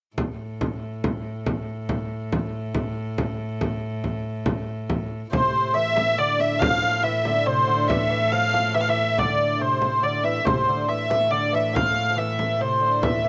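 Medieval dance in A minor at 140 BPM in a straight 3/4, mysterious and driving, opening with a distant, bright viola da gamba drone on A2 and a deep, up-front frame drum struck with hard hands, before a dark, nasal hurdy-gurdy melody and a delicate, fingerpicked gut-string lute second line enter at 5.3 s, with the drum, hurdy-gurdy and lute each carrying a slapback echo in a dry, open-air recording.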